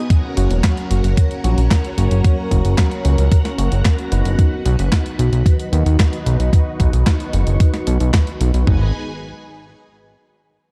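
A straight groove drives this bittersweet, nostalgic italo disco cut, taken from a longer piece. A clean 12-bit drum machine sits up front with a thumpy, sampler-style kick and toms, while its handclaps, hi-hat and medium-tuned snare sit lower in the mix with the boxy character of a small room. A fat, detuned sawtooth bass, also up front, holds sustained notes with a fast attack and an evolving filter sweep. A lush, bright string machine with a sub octave fills most of the excerpt with soft-attack sustained chords, shimmering through phaser and ensemble chorus as a filter sweep moves across it. From 0.4 to 4.6 seconds, a worn, slightly out-of-tune tine electric piano adds lightly overdriven stabs with digital delay, heard as if through built-in speakers. The chords move from F# to B and reach G#m at 8.7 seconds as a new section begins, all within a dry, dark, warm production.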